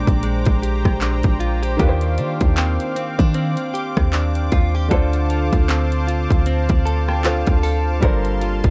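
Contemporary R&B at 77 BPM with a sensual, moody swing, built on a boomy, deep 808-style bass and an up-front trap kit of hard-clipped kick, bright hats, handclaps and rim clicks, while a natural baby grand piano, a smooth detuned sawtooth pad with chorus and tremolo, and a clean, compressed direct electric guitar picking delayed arpeggios move through Bb13, Ebmaj13, Dm7 and Gm11; a faint woody, round FM mallet pluck glints in from 2.6 to 6.8 seconds, and the piano adds a fill from 6.5 seconds, all in a dark, dry production.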